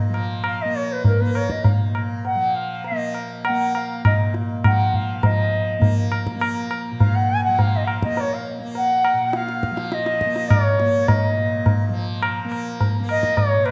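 A bright, reedy bansuri and a softly plucked tanpura open this introspective Hindustani excerpt together, with the tabla joining at 0.1 s. The bansuri carries the melody in raga bhairavi on Bb, ranging from Bb4 up to a slightly raised Ab5, its pure bamboo tone shaded with vibrato and tongued notes that sound somewhat distant yet sit up front. Beneath it, the tanpura sustains a buzzing, shimmering drone between Bb2 and Bb3, held lower in the mix. The high-tuned tabla rings out close and dry, marking a 5/4 metre at 102 BPM with a straight feel, and the pulse gradually speeds up across the whole passage. A new section begins at 5.2 s, carrying the longing mood onward as all three parts continue to the end, with a moderate scoring-stage reverb giving the space around them a 1.8-second tail.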